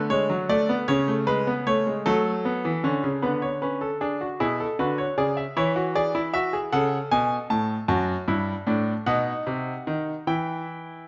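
Moving in a straight 6/8 at 51 beats per minute, counted in dotted quarters, this short cut from a longer classical work unfolds as a baroque-style three-voice fugue for solo grand piano. The mood is serious and contemplative, beginning in B minor and turning toward E minor at 7.9 seconds. The piano spans F#2 to A5 and has a bright, polished tone with short sustain, sitting up front and present in the mix. A brief opening passage gives way at 3.2 seconds to a longer stretch that travels through chords such as G#dim/B, C#m/E, A and Em11/F#, settling on B and then Em before the cut ends at 11.1 seconds. A moderate stone-room reverb lends the brilliant tone a resonant halo.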